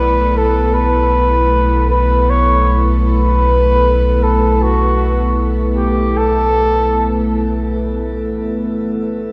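Ambient in free time, spacious and serene, this short excerpt from a longer piece centres on a distant, roomy flugelhorn melody between F#4 and C#5, bathed in shimmer reverb and tape echo, which stops at 7.3 seconds. Beneath it sit a warbling, nostalgic pad of detuned sustained chords with chorus and shimmer, a round, deep analog bass holding B1 up front, and a very quiet, nasal bowed-like drone with vibrato, all three lasting to 9.3 seconds. The echo-heavy mix rests in a wet spring reverb over a B5 chord.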